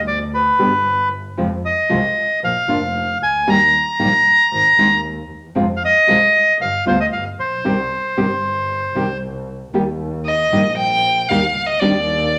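A moderate large-studio reverb gives this short tango excerpt a sense of space, with the bandoneon and violin placed up front. In C minor at 115 BPM and a flexible, rubato 4/4, the mood is dramatic and passionate. A dark bowed double bass, a single player with soft attack, vibrato and expressive portamento, sits low underneath from the opening to the close. The reedy, vintage, band-limited bandoneon carries the melody from the start until about 9.2 seconds, while a warm, classical nylon-string guitar, thumb-plucked, supplies accompaniment through harmonies that move from G and F minor through E-flat and A-flat toward C minor. At 10.3 seconds a rich, smooth and even bowed violin enters with vibrato for a solo second line, closing the excerpt over an E-flat chord that resolves to a C minor color.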